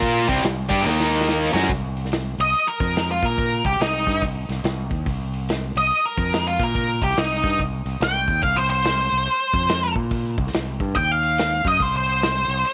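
A smoky, heavy blues rock and southern rock excerpt in C minor opens at 142 BPM in 4/4, with a bright, double-tracked overdriven electric guitar riff over growling fingered bass and a vintage drum kit, all swung on the eighths. The picked riff stops at 1.7 seconds, just after a drum fill leads into a guitar solo section built around C minor, Fsus4 and Bb5 changes. At 2.4 seconds an octave-fuzz lead guitar enters up front, its picked, distorted tone carrying the melody through to the end. Beneath it, the overdriven bass sits direct and amped in the low register, while the acoustic kit of hi-hat, punchy kick and medium-tuned snare sounds dark and smooth with a rolled-off top. Light reverb and studio ambience frame the trio, and late in the passage the harmony turns to an Ebadd9 and a stark C chord with a flattened fifth.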